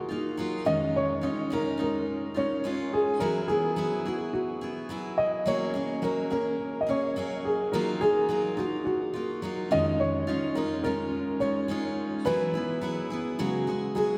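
A dark, woody upright piano carries the melody from the first moment, its action noise audible and its notes sustaining long, while a bright, full-bodied jumbo steel-string guitar is picked beneath it with fresh strings and the odd finger squeak. This sunny, easy-going acoustic pop fragment moves at 106 BPM in a straight 4/4 through add9 chords such as D#madd9, C#add9/E#, Eadd9 and F#add9, settling on C#sus4 at 13.4 seconds. Both instruments sit up front, the piano intimate, yet the whole piece is bathed in a long, wet cathedral reverb that gives it the spacious air of a church or concert hall.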